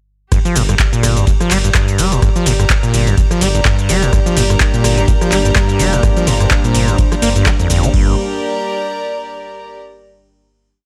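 Acid house at 126 BPM in G minor with a light 16th-note swing, trippy and hypnotic, built on a single Gm drop from 0.3 s where a squelchy, resonant saw acid line with overdrive, accents and slides rides a deep four-on-the-floor electronic kick and a booming analog drum machine of metallic hats, claps, rim clicks, shaker, ride and crash, both in studio reverb, while a round, dark off-beat analog bass with tube saturation and a close, earthy chamber string section pump under sidechain, a smooth, detuned pad with subtle chorus joins at 4.1 s, and the bright strings carry on through the final chord until 9.8 s.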